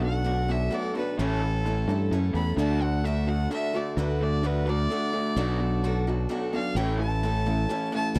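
In a straight 3/4 at 129 BPM, this jangly rock excerpt in D major features a clear, earthy fiddle soloing with light vibrato over a bright, boxy picked steel-string acoustic guitar with finger squeak, a dark, lo-fi double-tracked garage guitar riff with overdrive, and a round, punchy fingered electric bass up front, moving through Bm7, A and D in a dry, close 1970s-style studio sound.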